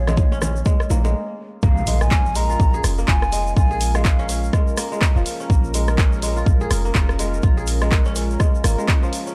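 An airy, hollow flute melody with analog delay opens this driving afro house excerpt at 124 BPM in Bb minor. It sits over crisp fingerpicked kora arpeggios, a deep, boomy 808-style bass and a layered electronic kick up front, along with deep house drums of handclaps, hi-hat and rim click, a grainy tube shaker, and brief high-tuned bongos and ringing congas in the background. After a short stop, the drop lands at 1.6 seconds with a very quiet electronic impact and a smooth sawtooth analog pad with chorus that pumps under the sidechain like the kora and bass; the flute falls away at 4.5 seconds, while the gritty, cassette-tinged small-room sound carries a 58% sixteenth-note swing.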